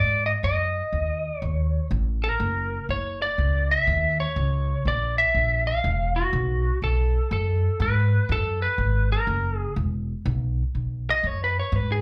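Heard live through a club's PA with the room's reverb around it, this short cut from a longer electric blues shuffle has a swaggering, laid-back swing as it moves between rootless B7, F#7 and B5 chords. An up-front, lightly driven lead guitar carries the melody with a dark, slightly broken-up, compressed picked tone and slapback echo, stepping into a solo at 10.3 seconds. Beneath it, a woody pizzicato upright bass on steel strings sits equally forward and anchors the low end throughout.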